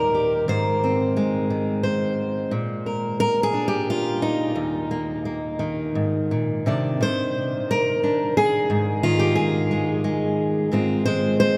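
A vast, echoing space surrounds this short folk recording, its cathedral reverb letting each note hang for a long while after it is played. A single fingerpicked steel-string acoustic guitar carries everything alone, sitting up front with an auditorium-sized body and a warm tone. In a three-beat metre with a freely flowing rubato feel, the playing reaches from low Eb2 up to D5. The harmony moves through Ab, Bb7 and Eb5 before a second passage begins at 6.7 seconds, turning to Cmadd9, Ab5 and finally Fm/Ab. Cut from a longer piece, the fragment runs just 11.6 seconds and leaves a warm, peaceful impression.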